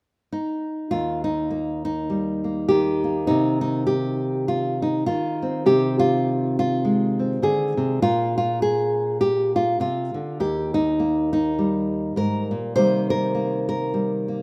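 Lightly swung eighths in 4/4 carry this hopeful, pastoral folk excerpt, where a solo fingerpicked classical nylon-string guitar sits up front from 0.3 to 14.4 seconds, its warm tone and audible finger squeaks moving through Eb, Cm7, Ab/C and Bbsus2 inside a lush hall reverb and a rough home-demo mix.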